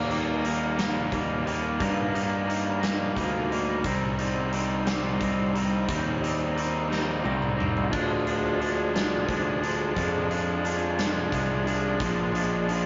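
A bright, double-tracked overdriven garage guitar riff sits up front from the first moment alongside a round, fuzzy picked electric bass, in a bittersweet, moody indie rock fragment in 6/8. A big acoustic rock kit with punchy kick, medium-tuned snare, bright cymbals, hi-hat and toms drives beneath, with a drum fill at 6.9 seconds as the chords move from Eb through Cm and Ddim to Bb7(no3). The rough rehearsal-room recording has a dull, capped top end and a moderate stone-room reverb.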